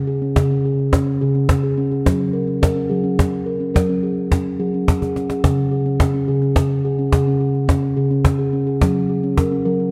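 A round, pure steel tongue drum opens this dreamy, calm piece of meditative world music, struck with rubber mallets and spinning out ringing arpeggios that sit up front. A snappy acoustic cajon with snares joins at 0.2 s, played with soft hands and miked close so it stays present beside the melody. The gentle 6/8 metre keeps a straight, unhurried sway as the harmony moves between Db5 and Gb chords. A brief drum fill at 5.0 s marks the midpoint of this short excerpt before the cycle begins again. A generous echo-chamber reverb and a dark, warm production wrap the two instruments in a soft, enveloping glow.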